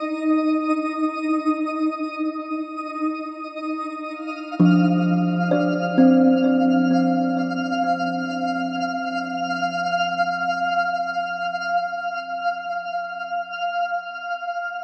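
A woody, hollow-sounding kalimba plays mellow, ringing arpeggios through a delay from 4.6 to 8.1 seconds, sitting up front over a Dm7/F chord in this serene ambient excerpt in free time, tuned to A4 = 439 Hz. Alongside it, a bright, sparkling granular texture with an octave-up shimmer, a soft attack and a long release glows for the full 14.8 seconds. The whole piece floats in a huge, wet reverb with a dark, warm production.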